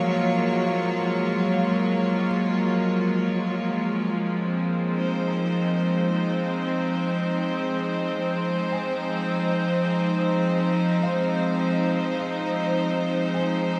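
A slow, straight 4/4 pulse at 52 BPM moves this reflective, serene ambient passage in F minor, cut from a longer piece. A rich chamber string section carries sustained bowed chords from 0.0 to 13.8 seconds, its earthy ensemble tone touched with light vibrato and placed up front. Alongside it, a very quiet felt-muted upright piano plays mellow arpeggios high in its register throughout. The piano's thick felt gives it a soft, dark, intimate character, and its hammer action is audible. The harmony rests on Gbmaj9 over F before settling onto Fm7 at 4.1 seconds. A huge, wet reverb with a 7.5-second decay places the music in a vast, echoing space.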